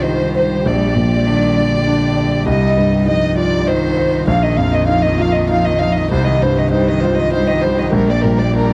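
Neoclassical piano and strings in C minor, this short cut from a longer piece moves at 99 BPM in a rubato 3/4 and carries a fragile, longing mood. A clear, intimate grand piano sits up front with its accompaniment, its action noise audible and its tone natural. Beside it, a chamber violin section carries the melody with a soft attack, light vibrato and a sul tasto hush, close and tender. Further back, a rich, focused solo cello sings a second line with vibrato and a smooth top, while a studio string section holds sustained chords, expressive with vibrato and portamento. The harmony circles between Cm, Gm/Bb and Bbsus4 across the 8.7 seconds, captured in a dry, close 1970s-style studio sound with small room ambience.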